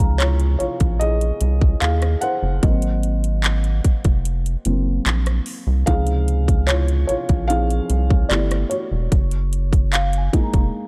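A straight 4/4 groove from an up-front trap kit, with a hard-clipped kick, metallic hi-hats, handclaps and rim clicks, drives this smooth, dreamy contemporary R&B passage cut from a longer piece. A rubbery, hollow square bass with a bouncy filter pluck sits forward beneath a felt-muted upright piano that carries the solo throughout, its intimate, mellow tone showing audible action noise as it moves from Dbmaj7 through Ab7 and back before slipping to G6 and Gb6. At a low level, a bell-like celesta adds delicate, sweet touches through digital delay, all within a small, dark room ambience.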